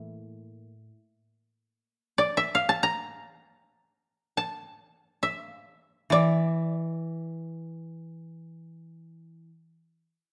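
Heard through a moderate recital-hall reverb, this still, solitary passage of traditional Japanese chamber music, cut from a longer piece, unfolds in free time: a mellow koto accompaniment, played with fingerpicks and sitting dry, woody and up front, opens alone, then at 2.2 s a second koto, also plucked with fingerpicks and equally close and dry but warm in tone, takes up a higher melody above it.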